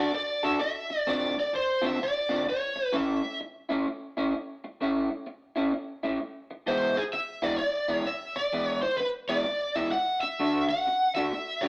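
Gritty and rollicking, this swung 128 BPM blues excerpt in A major pairs a slightly broken-up, lo-fi electric guitar riff running throughout with a dark, overdriven picked lead guitar, through a small cranked amp, that plays melody from 0.0 to 3.4 seconds and returns at 6.7 seconds, both up front in a rough rehearsal-room recording with tube saturation and a stony room reverb, over chords moving from D and Dm7 to A, E and back to D.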